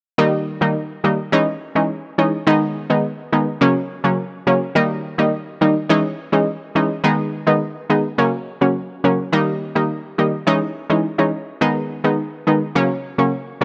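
Hypnotic and tough, this dancehall fragment sets a lone, up-front analog pluck with a detuned sawtooth tone, round and warbling under chorus and a filter sweep, cycling D#, C#madd9, G#m and F# from 0.2 to 13.6 seconds in a light reverb.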